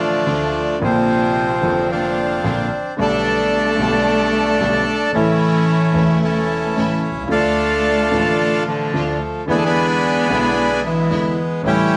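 Melancholic and dramatic, this short tango excerpt in D minor moves at 111 BPM in 4/4 with a rubato feel, tuned slightly low to A4 = 438 Hz. A reedy bandoneon sits up front carrying the melody, while a single bowed cello, rich and focused with vibrato, traces a second line in the background. A concert grand piano supplies the accompaniment with a deep bass and short sustain, and a symphonic string section adds biting, intense stabs with light vibrato, close yet set behind the lead. All four parts play throughout the 12 seconds, moving through Dm, Bbadd9, G/B and A before returning to Dm and landing on E7. A moderate studio reverb and small room ambience give the ensemble an intimate space.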